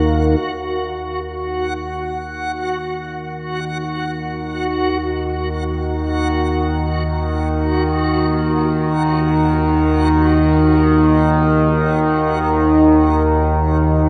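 An up-front, nasal analog drone built on sawtooth and pulse waves with pulse-width modulation anchors this ominous, desolate dark ambient piece in Eb minor, drifting in free time and fading in from 0.4 seconds beneath a moody, detuned analog pad of sustained chords in the background and a bright, reversed, granular swelling texture on Gb4 that fades out, all bathed in a wet cathedral reverb.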